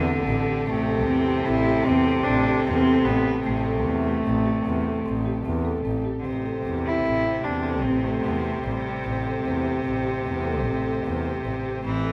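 A pensive, restless contemporary chamber piece in 7/4 at 150 BPM in A minor opens on an Am7 with a dark, lush symphonic string section sustaining chords in the background, a warm marimba with medium mallets playing arpeggios, a biting, earthy double bass bowed up front, and a bright cello carrying a second line, before a rich, reedy cello with gut-string tone enters at 0.7 s to sing the melody until 9.2 s, all set in light reverb with close, detailed microphones in this excerpt cut from a longer work.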